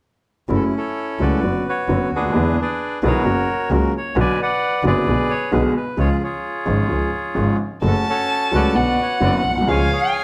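A moderate large-studio reverb surrounds this dramatic, melancholic tango excerpt in F# harmonic minor, set at 131 BPM in 4/4 with a rubato feel. A reedy, up-front bandoneon carries the melody over a woody, slightly detuned upright piano and an earthy, nasal bowed double bass with light vibrato. At 7.8 seconds a warm, expressive violin enters with a second line, its vibrato and portamento adding a smooth top as the phrase moves through F#m, Bm and C#.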